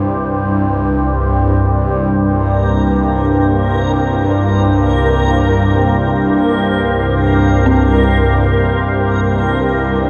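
Ominous and dark, this free-time dark ambient drone excerpt opens on an up-front, organ-like drone with ring-modulated, detuned sawtooth grit and ensemble chorus, sustaining a low Gm7/C foundation while a deep, moody pad with a sub octave evolves in the background from 0.4 seconds. A reversed, granular texture joins at 2.6 seconds on a dreamy triangle tone. At 7.7 seconds a very quiet, eerie FM synth bell adds inharmonic, decaying arpeggios, all set inside a huge, wet reverb with an 8.1-second tail.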